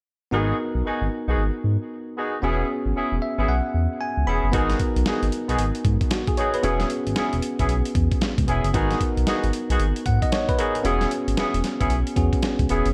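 An R&B excerpt in a new jack swing style, punchy and confident at 114 BPM in G# minor, where a smooth, dark synth bass with a sawtooth edge and ring-modulated bite sits up front beside a bell-like, barky tine electric piano and a mellow, vintage horn section firing jazz-style stabs with light vibrato over a G#m7 to E6 progression. The electric piano plays a fill from 3.0 to 4.5 seconds, and at 4.5 seconds a dusty, gritty sampler-style drum kit enters with a thumpy kick, medium-tuned snare and hi-hat, its compressed, tape-warm sound swung on the sixteenths. Light reverb lends the mix a digital ambience.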